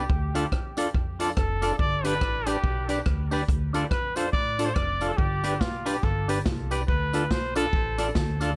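A breathy, whispered trumpet carries the solo melody up front, its soft attack, vibrato and vintage tone carried on tape echo, in this joyful, bouncy ska passage cut from a longer piece. Beneath it, a clean, twangy electric guitar plays picked accompaniment with its own tape echo, while an overdriven tonewheel organ adds gritty, percussive stabs coloured by chorus vibrato and a slow rotary speaker. A woody pizzicato upright bass with steel strings anchors the low end, and a swinging big-band drum kit, natural and punchy, works hi-hat, kick, rim click and a medium-tuned snare with a lilting eighth-note swing in 4/4. A jingly, compressed tambourine joins at 0.4 seconds and sits in the background. The harmony alternates between Dm and G, the trumpet's part ends at 8.1 seconds, and a light reverb gives the studio room a gentle sense of space.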